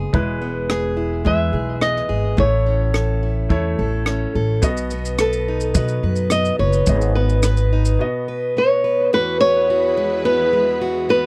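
Acoustic pop with a carefree, sunny mood, this short cut from a longer piece sets an up-front flamenco guitar melody, touched with tape echo, against a fingerpicked plugged-in steel-string acoustic guitar, a clear concert grand piano with short sustain, a woody pizzicato upright bass and a compact cocktail drum kit of punchy kick, rim click and shaker. The bass and drums stop at 8.0 seconds and the piano at 9.1 seconds, when a dark, bowed studio string section enters with soft-attack sustained chords and vibrato alongside the two guitars. The sound is dry and close, in the manner of a 1970s studio recording.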